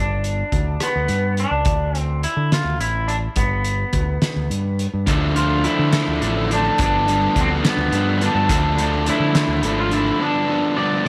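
A twangy, slightly broken-up electric guitar through a small old amp opens this indie rock excerpt at 0.0 seconds, carrying the melody with a lush chorus, while a growling fingered bass with overdrive sits up front beneath it. A loose indie drum kit joins almost at once, with a punchy kick, fat snare, hi-hat and rim click in a pumping studio room. The mood is cool and restless, moving at a slow 70 BPM in 6/8 with a straight feel in D dorian, the harmony shifting between G, D5, Dm and G7. At 5.1 seconds the arrangement thickens: an overdriven semi-hollow guitar plays a riff up front, joined in the background by a bright, thick fuzz guitar with distortion and lush chorus. A very quiet, crisp group handclap adds percussion from that point, all within light reverb and small room ambience.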